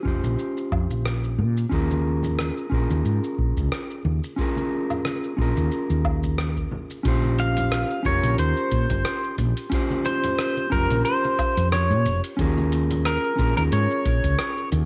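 A bright, twangy pedal steel guitar, played with fingerpicks, takes the melody from 7.4 s, its slide and volume swells sitting up front with cassette tape color and analog delay. This relaxed sunset chillout excerpt moves at 90 BPM in 4/4 with a 55% swing on the sixteenths, in Bb dorian, trading between Bbm69 and Eb7sus4. A mellow, clean electric guitar, fingered and dark, carries the accompaniment from the start, also up front and treated with the same cassette tape and analog delay. Underneath, a woody fretless bass with a round, hollow-body, amped tone anchors the low end, joined by a deep analog electronic kick. A dusty, gritty, compressed sampler-style kit adds hi-hat, rim click, shaker and woodblock, re-recorded in a large room, while very quiet, low-tuned congas with a thick-skinned, vintage sound fill in the percussion. The whole excerpt has a smooth, homemade feel, captured on cassette with light reverb.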